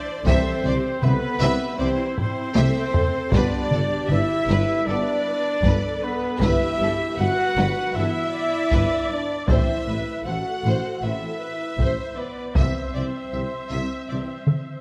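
Opening at once on airy flutes, a second violin line, expressive viola with portamento, warm French horn chords and distant, dark trumpet stabs, this epic, relentless orchestral film-score excerpt at 78 BPM settles by 0.3 s into a lush, vibrato-rich violin melody over woody cellos and double basses, a mellow tuba, tight close-miked trombone chords and heavy-stick taiko drums with a vintage, band-limited sound that break into fills at 2.2 s and 14.5 s, while the harmony moves through C, G, Em/G and Am in a moderate scoring-stage reverb.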